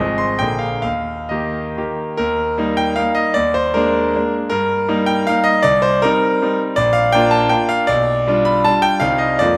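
Classical romantic triple-time dance for solo concert grand piano, proud and graceful, its dotted rhythms moving with rubato through a brief cut from a longer piece, the brilliant, up-front piano ringing with deep bass and long sustain in a wet scoring-stage reverb as the harmony turns from the home chord toward minor and closes on C minor at 9.0 seconds.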